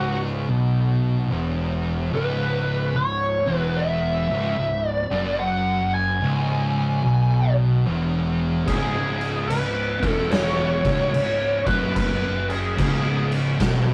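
This heavy, brooding stoner and doom metal excerpt opens at a slow 73 BPM on C# minor, with a compressed, wah-treated lead guitar carrying the melody up front over two thick, fuzzy rhythm guitars grinding out a low riff in the background and a growly, punchy overdriven fingered bass beneath them. At 8.7 seconds an oversized, low-tuned drum kit crashes in with a boomy kick, a medium-tuned snare and cymbals, sounding saturated and gritty in a bright stone room. The lead drops out at 13.3 seconds, and the whole swung, lumbering passage has the rough feel of a rehearsal-room recording with moderate reverb.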